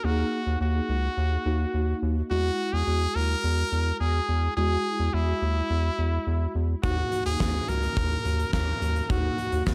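A straight 4/4 synth-pop pulse carries this cool, nocturnal fragment, where a brilliant, forceful trumpet with vibrato sings the melody through analog delay over a clean tine electric piano shimmering with ensemble chorus and a round, deep analog bass with a fast filter pluck sitting up front, until a huge arena drum kit with a fat snare and punchy kick bursts in at 6.8 seconds as the chords move from Ebm through Eadd9 and back, all in a small, lightly reverberant room.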